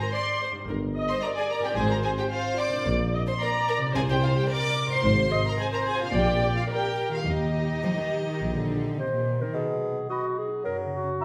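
A cinematic, magical and playful passage at 109 BPM in Eb major opens with a floating, up-front violin melody over a second violin line, dark violas, cello and double bass, all bowed sul tasto, along with tuba and a ringing fingerpicked harp in arpeggios, in a reverberant hall, before the clarinet enters up front at 9.0 seconds, joined by bassoon and then by an airy flute and mellow cor anglais at 10.1 seconds as the harmony shifts toward B and F#.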